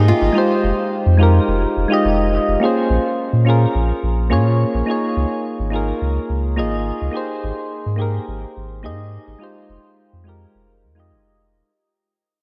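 A straight 4/4 pulse at 106 BPM carries this smooth, relaxed sunset chillout piece in F minor, cut from a longer track, where a small fingerpicked nylon-string guitar with analog delay plays a brief melody until 1.7 s over mellow, chorused electric-piano-like synth keys with a low-pass filter sweep and analog delay, while a deep, round sub bass sits up front beneath the Fm7, Bbm9, Db6 and Abmaj7 changes; the dreamy mix is soaked in a lush hall reverb and fades out from 2.6 s to its close at 11.7 s.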